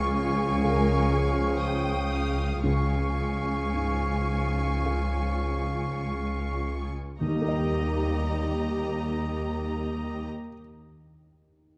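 Up-front, lush double basses anchor this tender, hopeful orchestral film-score excerpt at a rubato 49-65 BPM in Eb mixolydian, with expressive portamento cellos, a smooth violin section carrying the melody over second lines from a clear solo oboe, a pure, distant flute section, a mellow clarinet and focused second violins, while background violas, mellow French horn chords, ringing fingerpicked harp arpeggios and a soft felt-muted upright piano fill out the accompaniment. The music slows over a Db chord before shifting to Eb at 7.2 seconds, where barely audible timpani enter, all set in a moderate scoring-stage reverb with a dark, warm production.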